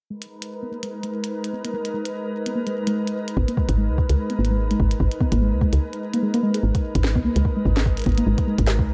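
A dark, lightly reverberant production frames this eerie, melancholic IDM excerpt, cut from a longer piece and set in a swung 4/4. A glassy FM pad holds ethereal, slow-blooming chords with ensemble chorus, built-in reverb and sidechain pumping, while a soft, round pluck traces arpeggios through chorus and digital delay, both shaped by filter sweeps through the opening section. A glitchy drum kit of clicky hi-hats and a tiny snare, overdriven and placed in studio reverb, ticks beneath from the start. At 3.4 seconds a woody, mellow FM bass arrives up front with a soft, overdriven electronic kick. After a short break from 5.8 to 6.6 seconds, a second section begins and carries the same layers onward.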